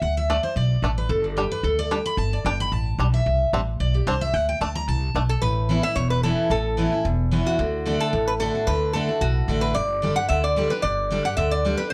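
Lively and virtuosic, this swinging bluegrass excerpt opens with a full-bodied, picked jumbo steel-string acoustic guitar soloing for the first 5.4 seconds, while a twangy, percussive banjo played with fingerpicks carries the melody. Underneath, a woody, thumpy pizzicato upright bass on gut strings holds down the low end, and from 5.3 seconds a bright, nasal lap resonator guitar with metallic slide and fingerpicks takes over the lead. Close, detailed miking in a dry room keeps every instrument up front.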